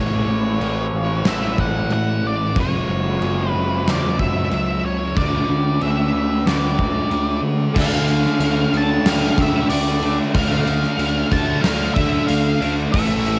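A gated 80s drum kit with a fat snare, punchy kick and bright cymbals sits up front from 0.6 seconds, driving this blissful, hazy shoegaze and dream pop rock excerpt at 92 BPM in a straight 4/4, its cassette-taped sound moving through A, F#m7 and D before turning to Dm. Alongside it, a thick fuzz guitar with subtle chorus and a raw lo-fi garage guitar trailing reverse reverb carry the riffs, a growling, round overdriven bass anchors the low end, and a dark octave-fuzz lead guitar sings the melody high above through tape echo. At 7.7 seconds a sludgy, double-tracked distorted guitar joins, and a very quiet, jingly tambourine follows at 8.1 seconds, all captured as a dry, homespun cassette recording.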